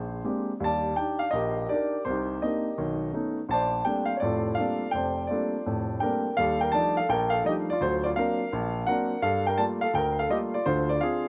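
Solo jazz at 167 BPM in 4/4, swung on the eighths and tuned to A4 = 439 Hz, this relaxed fragment of a longer piece features a mellow, natural-sounding grand piano placed up front, ranging from F1 to A5 with a touch of slapback echo. The harmony moves through rich extended chords such as Bb13, Ebmaj7, Cm9 and Bbmaj13, then shifts at 6.4 seconds into a second passage of Ebmaj9#11, D7alt, Gm9 and Dm7b5. Captured outdoors, the sound is dry and intimate, with barely any reverb.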